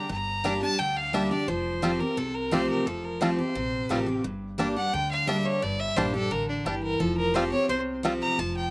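A clear, biting fiddle leads this rustic, driving bluegrass fragment, bowed with light vibrato and sitting up front as it takes an intense solo across the full 8.7 seconds. Beside it, a picked steel-string jumbo acoustic guitar with fresh strings supplies full-bodied, bright accompaniment, also placed up front. A twangy, percussive banjo played with fingerpicks enters at 0.4 seconds with arpeggios, while a pizzicato upright bass on gut strings adds a dark, woody, thumpy low end from 0.1 seconds. At a brisk 174 BPM in straight 4/4, the harmony alternates between Gm and Fadd9 in G dorian, tuned slightly below standard pitch at A4 = 436 Hz. Recorded outdoors with little reverb, the sound is dry and immediate, and the passage is cut from a longer piece.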